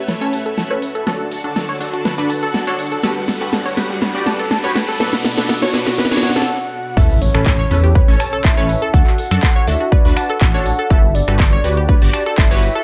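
A dreamy, reverb-soaked mix carries this uplifting, hopeful progressive house excerpt in A mixolydian at 122 BPM. It opens on a build-up: a phased supersaw swell holds sustained chords, a lush unison pluck plays stabs, and a chorused analog pluck runs arpeggios under a filter sweep. A very quiet granular texture twinkles, a riser and impact sit in the background, and a big-room dance drum kit with a huge snare, handclaps, finger snaps, hi-hat, shaker and crash plays a fill, while the chords move through Aadd9, D, Gmaj7 and Bm. A soft octave-layered synth lead with vibrato and 12-bit sampler grit takes the melody from 6.2 seconds, and after a brief break the drop lands at 7.0 seconds with a punchy electronic kick up front and a deep, rumbling detuned saw bass pumping under sidechain alongside both plucks.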